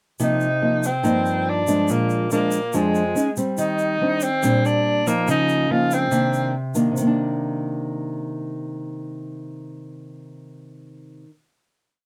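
A breathy tenor saxophone sings a wistful, intimate bossa nova melody in short song-like phrases with subtone, vibrato and scooped notes until 6.6 seconds. A dark, thumb-plucked nylon-string guitar plays thumb bass and syncopated chords beneath it, and a bright, grainy egg shaker adds quiet percussion. The guitar carries the final chord and rings on alone to 11.4 seconds, all caught by close, detailed microphones with light reverb.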